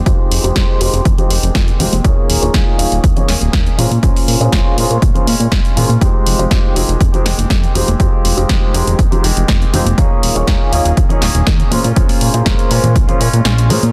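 Filtered disco house at 121 BPM in F minor, sensual and groovy, where a fat, detuned analog bass and a punchy, tape-warm electronic kick drive beneath a warm grand piano with phaser, a twangy, warbly clean guitar riff, a house kit of snare and hats, and close, dry shaker and congas in the background, all under a filter sweep across the whole clip, with sidechain pumping on every part but the kick and snare, until the kick drops out at 13.5 seconds over a Fm9, Eb7sus4 and Bbm7 cycle.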